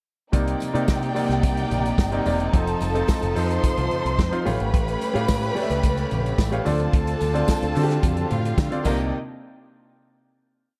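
Danceable and glamorous, this short disco piece rides a warm soul drum kit playing a four-on-the-floor beat with sixteenth-note hats, while a bright, punchy picked electric bass with an envelope filter drives a syncopated line with chromatic approach notes over chords moving from Cm9 through F7, A7b13 and Dm7. A clear, intimate baby grand piano adds syncopated, spread chords with grace notes and audible action noise, a lush violin section sings long high lines with vibrato, and a focused string section holds a sustained pad in the background. Faint congas with a slap on two and open tones on four and a jingly tambourine on the backbeat fill out the groove, all in a dark production with small room reverb that closes on a final hit at 9.1 seconds.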